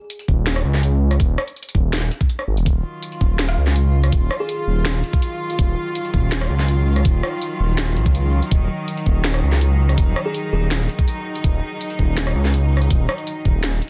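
Heavy and dark, this half-time drum and bass excerpt at 164 BPM in Eb minor is driven by a knocking electronic kick and an up-front kit of cracking snare, bright hats, rim click and tambourine, joined by a deep, rumbling detuned saw bass with a saturated, beating edge, while an intimate, softly bowed sul tasto cello section enters at 2.7 seconds with sidechain pumping on its sustained chords and a woody, hollow kalimba touched with digital delay offers brief notes in the background at 4.4 and 10.3 seconds, the whole sitting in a dense, heavily limited modern master with light reverb.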